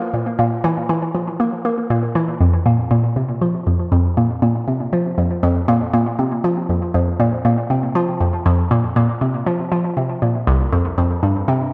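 Ambient excerpt at 119 BPM in a straight 4/4 with a cosmic, mysterious mood, carried alone by an up-front, hollow, bouncy square-wave pluck (detuned, with a noise layer and a fast-attack, short-decay filter pluck, dressed in chorus, phaser and analog delay) ranging from C2 to Bb3 and moving into a new section at 2.4 s, all bathed in a wet spring reverb with a 3.0-second tail and an echo-heavy mix that holds nothing above 10.7 kHz.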